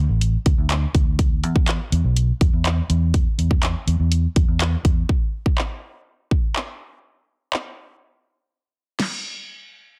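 Dance-pop at 123 BPM in a straight 4/4, this driving, bittersweet excerpt opens on a drop, with a dark, foam-muted vintage electric bass sitting up front and pumping against the sidechain until it stops at 5.0 seconds. A punchy, layered pop drum kit enters at 0.2 seconds, its fat snare, handclaps, crash, and hats carrying on into the second section before a silent gap at 8.5 seconds. The sound is set in a digital ambience with a dense, heavily limited modern master.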